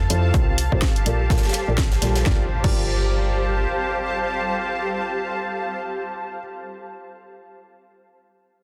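A swung 125 BPM groove in 4/4 drives this energetic, bittersweet piano house fragment in G minor, built from a punchy electronic kick recorded in a large room, an overdriven garage kit with a cracking snare and crash, and a dry, high-tuned reggae kit sitting in the background, with the drums dropping out at 2.8 seconds. A round, dark FM bass pumps under the sidechain while a clear, woody upright piano riff, low-pass filtered and trailed by dub echo, runs from 0.1 to 6.4 seconds across C7sus4, Bbmaj7 and Gm7 chords. An up-front, cloudy granular pad and a very quiet, silky detuned string pad fill the space, and a background electronic impact arrives at 2.3 seconds, all within a dense, heavily limited master with light reverb.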